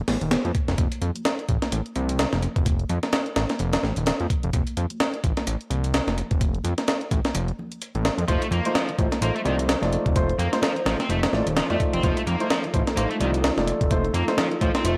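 Breakbeat with a funky, raw edge at 128 BPM, this excerpt rides a compressed, pitched-up sampler-style break with a thumpy kick and medium-tuned snare up front, a fat, detuned sawtooth bass with a filter sweep, very quiet bright congas and a dry electronic hi-hat in the background over an F7 chord. At 8.3 seconds a moody square-and-sawtooth pad with chorus and sidechain pumping enters alongside a sludgy, overdriven, double-tracked guitar riff and mellow grand piano stabs, both carrying analog delay. The sound is gritty hardware with transformer saturation and light reverb.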